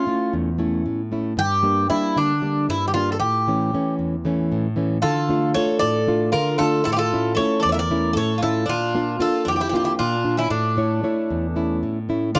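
In a straight 7/8 at 230 BPM counted in eighths, this brooding, bittersweet Greek bouzouki-band fragment sets an up-front bouzouki melody of bright, metallic, picked double strings with some octave-doubled courses over a full-bodied, fingerpicked nylon-string guitar accompaniment of deep classical tone, while a second bouzouki joins at 5.0 s with a quieter second line as the harmony keeps returning to A between Gm, Dm and Bb, all captured in a dry, close, 1970s-style small-room sound.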